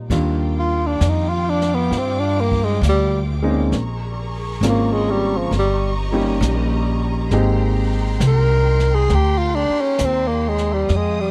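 A breathy tenor saxophone carries the melody from 0.6 seconds, mellow and up front, with subtone, vibrato, scooped notes and a touch of tape echo that give this intimate, late-night jazz ballad its voice. Beneath it, a woody pizzicato upright bass sits close in the mix, while a concert grand piano comps with deep bass and audible action noise until 10.9 seconds. A distant, lush string section holds bowed chords high above, colored by vibrato and portamento. A brushed drum kit with dark cymbals, a medium-tuned snare and a boomy kick keeps a slow 67 BPM swing in 4/4. The dry, close 1970s-style studio sound frames a short stretch of Eb major harmony moving from Ebmaj9 through Bbm9 and Eb7 to Abmaj9, cut from a longer piece.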